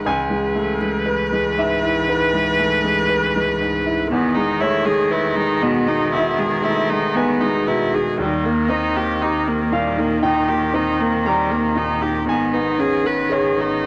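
Vinyl crackle and a modest small-room reverb frame this fragile, longing neoclassical piece for piano and strings, heard as a slow, rubato passage at 59 BPM in C# minor. An up-front upright piano, clear and woody with long sustain, shares the accompaniment with a close, smooth solo viola, while a focused solo cello carries a second line, both strings bowed with vibrato. A deep, punchy sine sub bass with a pitch-drop attack sits low beneath them as the harmony moves from C#m7 through Emaj7 and D# to G#m.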